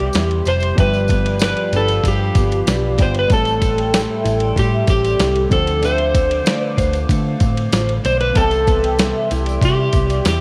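Wistful and hazy, this bedroom-pop excerpt puts a dark, slightly broken-up electric slide guitar up front on the melody, with lush chorus and tape echo, while a ringing vibraphone with slow motor vibrato carries a second line in the background. A fingerpicked nylon-string guitar with subtle chorus and vibrato, a very quiet, woody upright piano with audible action noise, and a warbling, nostalgic, lo-fi tape-like pad holding sustained chords fill out the texture. Beneath them sit a round, foam-muted electric bass with tube saturation and a gritty, compressed sampler-style drum kit with a thumpy kick up front. A jingly tambourine enters at 0.1 seconds, and moderate spring reverb lends a hazy glow over chords moving from Cmaj7 through G7, Am7 and Dm7.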